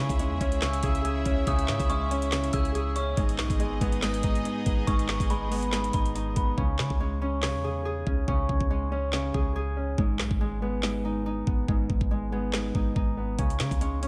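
Hard-hitting and dark, this half-time trap excerpt sets a mellow, dark grand piano and a ringing, fingerpicked Celtic harp with digital delay over a deep, boomy 808-style bass and an up-front trap kit with knocking kick, woody snare, metallic hats and handclaps carrying 12-bit sampler grit, while a floating, bowed string section and an eerie, warbling detuned FM synth bell treated with chorus, phaser and delay end at 6.5 seconds, after which the hi-hats drop away from 6.6 to 13.4 seconds in a small room ambience.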